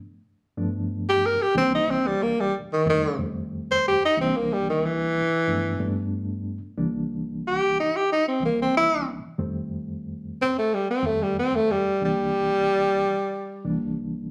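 A reedy, slightly out-of-tune electric piano with fast tremolo opens this swaggering, gritty blues excerpt at 92 BPM in C mixolydian, laying down ninth chords on C, F and G beneath a breathy, mellow tenor saxophone that enters at 1.1 s with an up-front, jazz-style solo full of scooped notes and light vibrato, the band playing live together in a large studio room with moderate reverb.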